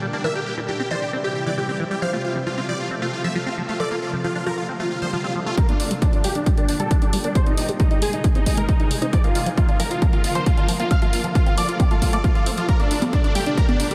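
This uplifting trance cut at 135 BPM opens with a shimmering, ethereal pad of sustained chords and a squelchy, resonant acid bass arpeggio set back in the mix, both breathing with sidechain pumping. A huge, detuned supersaw lead carries the euphoric, emotional melody almost at once, with phaser and a diffuse ambient delay. A glassy, crystalline wavetable pluck adds a second line in the background until about 5.5 seconds, while the harmony moves from C through F and Bb. A very quiet swell leads into the build-up at 5.6 seconds, where a heavy, layered electronic kick lands up front with analog hi-hat and congas, and a warm grand piano takes over the second line with lush chorus. Filter sweeps then run through the supersaw, acid bass and piano over chords of Gm, Ab, Bb and F. A drum fill and riser close the build in a dreamy mix soaked in long ambient reverb.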